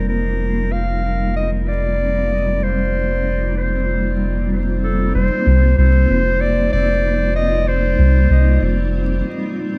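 A clear, punchy clarinet carries the melody up front in a classical solo style, its line ranging from A4 to F5 and trailing dub echo until it stops at 8.9 seconds. This hazy, spacious ambient dub piece moves at 95 BPM in 4/4 with a light 16th-note swing, tuned to A4 = 438 Hz and opening on an F9sus4 chord. Beneath it, a granular cloud pad holds sustained chords between G3 and F4, cloudy and blurred yet full-bodied and bright, with slow attack, long release, its own built-in reverb, and a filter sweep through the first 5.1 seconds. A deep, round sub bass sits up front from F1 to C2, with a fast attack and sustained notes. The echo-heavy mix is bathed in moderate spring reverb and a small room, with vinyl crackle adding grain, and this cut from a longer piece shifts into a new section at 5.1 seconds.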